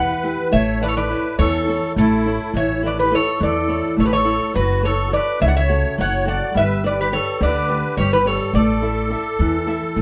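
A picked Greek bouzouki leads this relaxed, hopeful Greek folk piece, its doubled metallic strings, some tuned in octaves, sitting up front and carrying the melody throughout the 10 seconds. Beneath it, a musette accordion adds a reedy, shimmering second line, while a fingerpicked flamenco guitar supplies a bright acoustic accompaniment, with finger squeak audible on its strings. An upright bass, plucked pizzicato on steel strings, gives a woody, warm low end and also sits prominently in the mix. The band moves in a straight 7/8 metre over a progression that runs from Em to A, then F#m and G, settling on an A5 at 8.5 seconds. Played live together in one room, the ensemble is bathed in a wet studio reverb, and the clip is cut from a longer piece.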